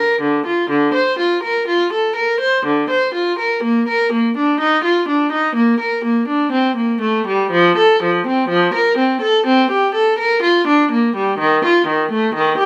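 Light reverb surrounds a single viola that sits up front in the sound, its rich, reedy gut-string tone carrying a light vibrato. This is a classical, baroque-style suite movement for unaccompanied viola in B-flat major, played by one bowed player in period style. The mood is serene and radiant, moving at around 62 BPM in 4/4 with a flexible, rubato feel. The viola ranges from D3 up to C5 and plays alone for the full 12.7 seconds of this brief passage, which is cut from a longer piece.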